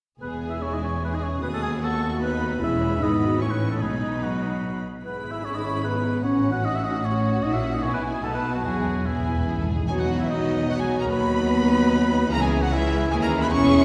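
A cheerful, spirited classical-period orchestral movement in a quick 3/4 at 150 BPM opens in E major with a rich violin section singing the melody over lush second violins, a close-miked oboe, focused violas, mellow French horns sustaining chords and clear, distant cellos and double basses. Hard-mallet timpani play a fill at 8.6 seconds, and at 9.9 seconds the music turns to B major as an airy flute, a very quiet clarinet and a mellow bassoon join in, all heard from further back in a reverberant concert hall.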